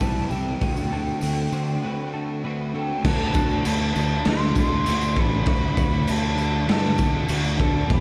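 Hazy and wistful, this shoegaze and dream pop rock excerpt sets an airy, distant concert flute melody with vibrato and analog delay over twangy, chorused clean guitar arpeggios, a thick, distorted fuzz guitar riff, an overdriven semi-hollow guitar riff with reverse reverb that runs through a break from 1.8 s and stops at 3.0 s, round, punchy fuzz bass, a gritty, lo-fi garage drum kit up front with crash, hi-hat, kick and snare in a bright stone room, and a jingly tambourine, all under a dark studio reverb.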